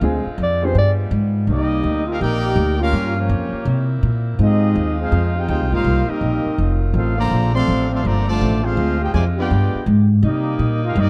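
Jazz in C minor at a swinging 164 BPM in 4/4, this brassy excerpt is cut from a longer piece and carries a dark production with little reverb. It opens on a brief clarinet solo, a breathy, subtoned voice with scooped notes and vibrato heard from 0.4 s, over a woody, slightly detuned upright piano that comps only until 1.1 s. An up-front pizzicato upright bass, thumpy on steel strings, runs throughout beneath a soft-attacked, vintage saxophone section holding tight sustained chords in the background. At 1.5 s the trumpet section takes the melody with a clear, present tone and light vibrato, while a close-miked trombone section plays a second line. The harmony moves through minor ii–V changes such as Dm7b5 to G7b9, passing through Fm9 and Bbmaj9 before returning to Cm9.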